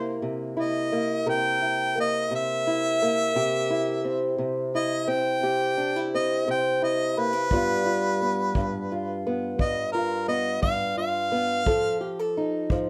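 Heard in a moderate studio reverb, this recording places the harmonica and guitar up front. It is a laid-back, soulful acoustic country blues at 58 BPM in dotted quarters, with a straight 12/8 feel in C mixolydian and tuning at A4 = 438 Hz. A clear harmonica carries the melody as a jazz-style solo from the start, with light vibrato, scooped notes and a smooth top. Beneath it, a fingerpicked, ladder-braced acoustic guitar on old strings gives woody, boxy accompaniment. A kick drum played with brushes enters at 7.5 seconds as the harmony moves from C7 to G7, adding a punchy small-room thump before F7 arrives near the close. The harmonica stops at 12.3 seconds, and the guitar and kick drum continue until 12.9 seconds, where this section cut from a longer piece ends.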